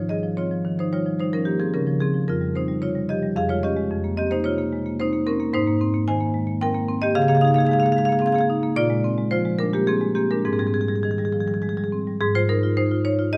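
A resonant recital hall surrounds this brief excerpt of a contemporary classical piece for solo marimba, played with medium hard mallets that give the up-front instrument a dark, smooth yet percussive tone across its span from F2 to Ab5. In a flowing, warm mood, the music moves in a rubato 3/4 around 110 BPM in Ab major, drifting through rich extended harmonies such as Dbmaj7, Eb11/F, Abmaj9 and Db69 before settling on Abmaj7 at 10.5 seconds. A fresh statement of the opening material begins at 12.2 seconds, just as the excerpt ends.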